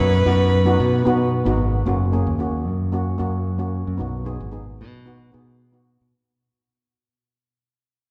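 A straight 4/4 calypso groove sets a sunny, carefree mood in this short fragment, where a dark, woody bowed fiddle with light vibrato sings a brief melody that stops at 1.3 s, a shimmering double-seconds steel pan played with medium rubber sticks carries the close, dry accompaniment, and a bright fingered electric bass anchors the low end, all heard in a church-like hall with a long, wet reverb as the harmony moves from B to F# and back while the music fades from 1.9 s.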